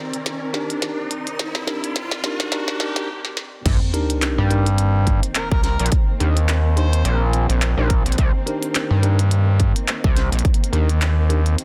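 A swung 16th-note glitch hop groove at 106 BPM in C minor sets a gritty, funky mood, opening on a build-up where a glitchy kit of tiny snare, clicky hats, handclaps and crash plays fills under a riser and sub drop. A cloudy granular pad with built-in reverb and a dark, woody string section with 12-bit sampler grit sit in the background, both pumped by sidechain. After a brief stop, the drop hits at 3.7 seconds with a punchy, overdriven electronic kick up front and an aggressive, wave-folded synth bass, while bell-like tine electric piano stabs with tape echo pump through the mix. A mellow, distant harmonica slips in briefly at 5.3 seconds, low-pass filtered with tape echo, over a dense, heavily limited, dry master in this section cut from a longer piece.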